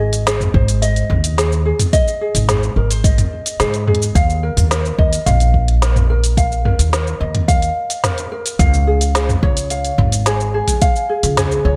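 A light, thumb-plucked ukulele with tape echo spins arpeggios up front in this playful, pastoral folktronica excerpt at 108 BPM in Db major, over a woody pizzicato upright bass on steel strings, an organic electronic kit of cabasa, crisp hats, snare and toms re-recorded in a large room, and a deep electronic kick that enters at 0.5 s, as the chords move from Ab to Ebsus2 to Db in a dry, close mix.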